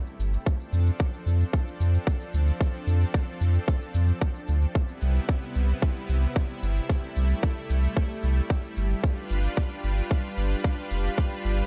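This piano-and-strings electronica piece, cut from a longer work, moves at 112 BPM in a straight 4/4 in C major, with a tender, hopeful mood. A lush, thick unison pad of detuned sawtooth voices holds sustained chords in a bright, warbling, vintage tone, coloured by chorus and sidechain pumping, and it fades in across the whole passage. Beneath it, a deep, round sine sub bass with a fast attack sits up front, sustaining mellow low notes that pump with the sidechain. A tight, overdriven electronic kick enters at 0.5 seconds and stays up front, while a quieter overdriven shaker adds texture, both re-recorded in a large room. The harmony moves from F6 to Cmaj7 and then to G7, and the overall mix stays dry, with little reverb.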